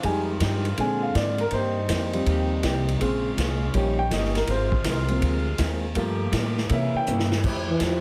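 A grand piano takes a warm, short-sustained solo from 0.0 to 7.4 seconds in this joyful, brassy big band swing fragment at 162 BPM, moving through rich jazz changes from Fm9 toward Fmaj9. A woody pizzicato upright bass, a roomy, distant drum kit with a boomy kick that ends in a fill at 7.1 seconds, a clean hollow-body electric guitar and a softly vibrato-laden saxophone section sit behind it. A mellow, scooping trombone steps up front at 7.7 seconds, all heard through a small room and a heavily compressed, radio-like sound.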